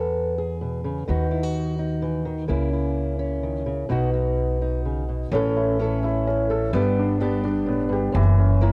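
A 3/4 waltz at 127 BPM with a straight feel opens this short, hopeful and pastoral cut from a longer acoustic folk piece. A fingerpicked old ladder-braced acoustic guitar carries the accompaniment from the start, its dark, boxy tone and old strings colored by cassette tape. Beside it, a pizzicato upright bass with steel strings sits up front with a woody, warm body, anchoring the low end down to F#1. At 5.3 seconds a felt-muted upright piano enters with soft, mellow arpeggios, intimate and natural, its thin felt and audible action noise also carrying a cassette tape character. The harmony moves from E through B/D# and C#m69 before stepping down through A and G to a closing F#7, all heard in a small room with light reverb that gives the home cassette recording a close, personal feel.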